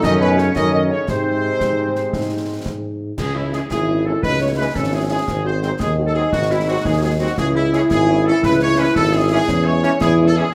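A military-style march for wind band in C# minor, this short excerpt moves in a straight 6/8 at 114 BPM, counted in dotted quarters, with a stern, martial mood. The trumpet section carries the melody with a warm, lightly vibrato tone, sounding distant and tight as an ensemble, while a mellow solo euphonium and a background woodwind section add second lines beneath and alongside it. A mellow French horn section supplies accompaniment and the trombones hold sustained chords with a gentle attack, both sitting back in the blend. Anchoring the low end, a solo tuba with a mellow tone and vibrato sits up front, and a concert snare, bass drum and clash cymbals with dark cymbals keep the march pulse from an acoustic small-room setting. The harmony opens on D#dim/F# and G#, then from 3.2 seconds settles into C#m and G#7 before closing on C#m/E, all bathed in a large, wet studio reverb that gives the brass and winds a roomy, classical-style depth.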